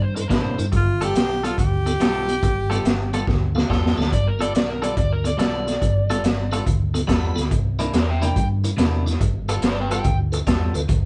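An overdriven slide guitar with a dark tone takes the solo from 4.1 seconds, after a close-miked tenor saxophone carries a brief, soft-edged melody with vibrato between 0.8 and 3.7 seconds in this laid-back, soulful electric blues shuffle. Underneath, a gritty, saturated breakbeat kit with a punchy kick and high-tuned snare sits up front, while a round fingered bass anchors the groove. A twangy, picked clean electric guitar riff and a piping tonewheel organ with key click and slow rotary speaker fill out the band, which plays live in one room with light reverb and a rolled-off top.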